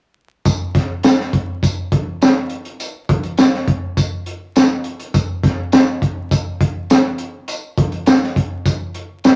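A crunchy breakbeat drum kit of hi-hat, tight kick and high-tuned snare sounds up front, dark, gritty and saturated with a rolled-off top, while a jingly tambourine sits close, dry and in the background, both driving this joyful, danceable soul excerpt at a straight 102 BPM in 4/4 from 0.5 to 9.4 seconds, framed by moderate studio reverb and a layer of vinyl crackle.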